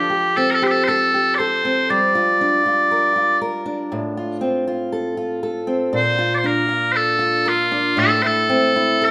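A moderate recital-hall reverb surrounds this short, mournful Celtic slow air, cut from a longer piece and moving at a rubato 59 BPM in 4/4. Loud, piercing bagpipes carry the haunting solo melody up front and continuous from start to finish, while a fingerpicked steel-string acoustic guitar, close and warm with audible finger squeak, accompanies throughout. The harmony passes through Fadd9, Gm7, F/A and Bb before arriving on Am at 8.0 seconds.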